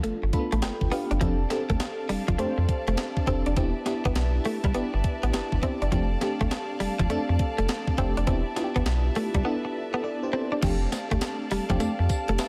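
A round, deep analog bass sits up front in this bouncy, upbeat new jack swing R&B cut, its dark tone blending sawtooth and sine with a fast attack and sustained notes. It plays at 102 BPM in 4/4 with a swung sixteenth-note feel. Beside it, a sampler-style 12-bit drum machine delivers a thumpy kick, a medium-tuned snare, hi-hat, crash and tambourine, all carrying the sound of a large room. A mellow FM electric piano with tremolo and phaser opens with a fill before settling into accompaniment. Meanwhile, a clean, direct-recorded electric guitar plays a picked, compressed riff coated in lush chorus. At 1.2 seconds an intimate studio string section enters softly with bowed, sul tasto chords and gentle vibrato, and the harmony moves from G9 into alternating F6 and Cmaj9/E, with a break from 9.4 to 10.6 seconds, all framed by light digital reverb in this fragment of a longer piece.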